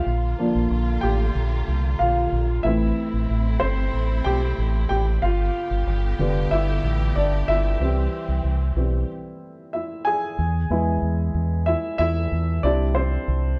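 This excerpt of piano-driven pop opens with a woody upright piano and a lush bowed string section sounding together, joined a moment later by a deep, round fingered electric bass. The mood is earnest and driving, moving at 93 BPM in a straight 4/4 feel. The piano carries the accompaniment up front and takes solo passages, while the strings hold sustained chords with vibrato and expressive portamento until they stop at 9.1 seconds. The dark, amped bass sits prominently in the low end, anchoring the harmony as it moves through Bb, Am, G and C before shifting to E and back to C in the closing section from 10.4 seconds. The band sounds as if playing live in one room, with moderate studio reverb and a soft top end that keeps the sound rounded.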